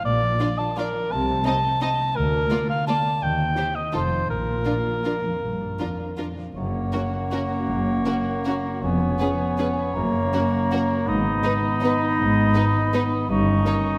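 Opening together, a mellow, up-front cor anglais and ringing, thumb-plucked concert harp arpeggios float over dark, woody cello and double bass sections in this sweeping, elegant classical excerpt in 3/4 at a rubato 150-183 BPM, soon joined by soft, sul tasto violins and lush viola in the background, before a shift from Bb major to F# major at 6.5 s brings in distant French horns, a hollow silver flute and a roomy clarinet, all bathed in wet scoring-stage reverb.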